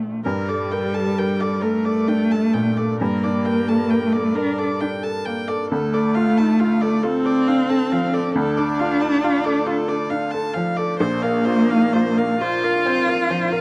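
Neoclassical piano and strings in G minor, this fragile, reflective fragment of a longer piece drifts at 44 BPM in dotted quarters in 6/8, with a rubato feel and tuning at A4 = 441 Hz, moving from Gmadd9 through Dm to Bbsus2. Up front, a rich solo cello carries the second line with vibrato, soft attacks and expressive portamento, beside a felt-muted upright piano whose mellow, intimate accompaniment also sits close. A clear, smooth, even bowed viola joins at 0.2 s, and the whole is set in light reverb within a dark production.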